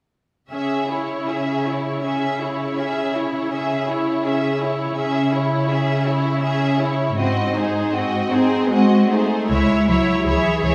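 Elegiac and yearning, this slow romantic movement for string orchestra, cut from a longer piece, moves at 80 BPM in a rubato 3/4 in C# minor. A focused, distant-sounding violin section carries the melody above a second violin line with a smooth top, while an even viola section supplies accompaniment and an up-front cello section holds the bass, each bowed with vibrato. The harmony shifts from C#m to G#7 at 7.2 seconds before settling back on C#m at 9.5 seconds, where a woody double bass section joins on a low C#, all bathed in a wet recital-hall reverb.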